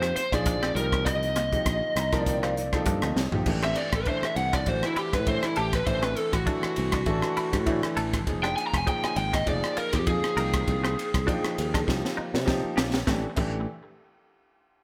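Electric jazz fusion at 100 BPM in 4/4 with a light 16th-note swing, nocturnal and slick, cut from a longer piece. A dark, overdriven lead guitar through a small cranked amp carries the melody up front and takes a solo from 3.5 to 13.1 seconds, stopping at 11.8 seconds, while a boxy baby grand piano accompanies and plays a fill from 1.7 to 3.5 seconds. In the background, a bright, clean semi-hollow electric guitar adds compressed stabs colored by ensemble chorus and digital delay, and a growly, round fretless bass sustains underneath. The crisp fusion drum kit sits up front with a punchy kick, high-tuned snare, ride, hi-hat, rim clicks, toms and crash, along with gated reverb and a pumping small-room sound, and its fills lead into the solo and close it out. The harmony moves from Fm9 and Cm9 through Am, Fm7 and back to Cm9 before landing on A5, all within a bright 1980s-style digital production with light small-room ambience.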